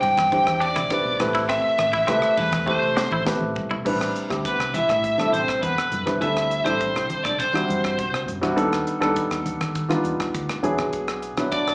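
Intense and funky, this electric jazz fusion excerpt at 102 BPM in A dorian puts a dark, overdriven lead guitar melody up front beside a mellow grand piano, both touched with slapback echo, over a round hollow-body bass, a tight funk kit with a high-tuned snare, and bright, thin-skinned congas in the background. Twangy, compressed clean guitar stabs sit in the opening seconds, running from 0.6 s to 3.8 s and overlapping a drum fill that starts at 2.7 s. A breathy trombone with vibrato and scooped notes enters at 4.5 s as a second line while the chords move from Am11 through D9sus4 and B7alt/D# to E9. It all comes through a live club PA with a small-speaker sound and a short, wet room reverb.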